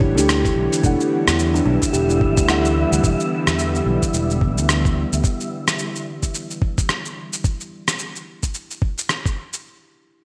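Organic downtempo at 109 BPM in E dorian, hypnotic and warm, with a 16th-note swing and a single Em7 chord beneath a short cut from a longer piece. A thumpy, overdriven electronic kick and a gritty sampler-style kit of hi-hat, rim click and shaker sit up front with gated reverb on the kit, while a growly fretless bass and a felt-muted upright piano in the background pump against the kick, and a woody kalimba plays arpeggios, the piano and kalimba carrying delay. A tense, string-like bowed drone with 12-bit sampler grit and vibrato holds sustained chords under a filter sweep from 0.8 to 7.4 seconds, joined by a breathy, wind-like tuned noise texture on E5 with ensemble chorus, all set in a lush hall reverb with a bright 1980s-style digital sheen.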